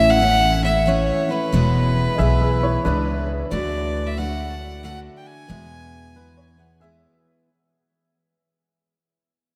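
A swung 3/4 lilt at 91 BPM carries this nostalgic, sunny honky-tonk and classic country excerpt, where a clear, earthy fiddle with light vibrato leads over a bright, full-bodied picked dreadnought acoustic guitar with finger squeak and a growly, thumpy pizzicato upright bass, while a worn, slightly detuned upright piano joins with a second line at 2.1 seconds, the harmony moving through A, E and D inside a vast, echoing cathedral reverb as the clip fades out throughout.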